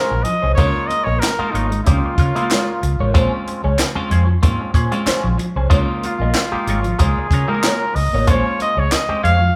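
A smooth-topped jazz trumpet with light vibrato solos up front over a hypnotic, driving funk groove, while a slightly broken-up electric guitar with wah and spring reverb comps beneath it, a second, compressed guitar picks a riff in the background, a stringy clav through auto-wah adds stabs, a dark, round, foam-muted bass and a tight cocktail kit with punchy kick and high-tuned snare sit close up, and very quiet, crisp group handclaps join at 1.2 seconds, the whole band playing live together in a large studio room in this cut from a longer piece.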